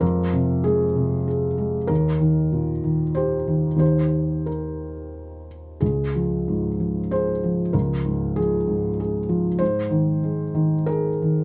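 Neoclassical minimalist piano in 3/4, played with a rubato feel at roughly 87-99 BPM and tuned slightly above standard pitch, at A4 = 443 Hz. This short excerpt, cut from a longer piece, carries a hopeful, peaceful mood. A felt-muted upright piano plays solo throughout the 11.4 seconds, ranging from Db2 up to C5, its soft, mellow tone sitting intimate and up front with audible action noise adding a natural character. The harmony moves from Fm through Eb and Db before settling on Ab at 9.6 seconds. A moderate studio reverb with a 0.7-second tail gives the dark, warm production a gentle sense of space.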